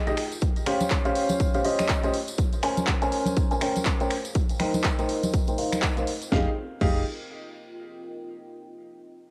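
A clear, vintage grand piano riff opens this energetic, bittersweet piano house excerpt in F minor at 122 BPM with a 16th-note swing, pumping under sidechain and swept by a low-pass filter with tape echo over Eb13, Bbm9 and Cm7 chords. It is soon joined by a punchy, overdriven electronic kick up front, a house kit with a cracking snare, handclaps, finger snaps, hi-hat and crash, ringing, close tambourine and congas, and a very quiet, deep, detuned sawtooth pad. At 6.3 seconds a round, mellow FM bass arrives in the background on Fm9. The mix carries the character of a home cassette recording with light studio reverb.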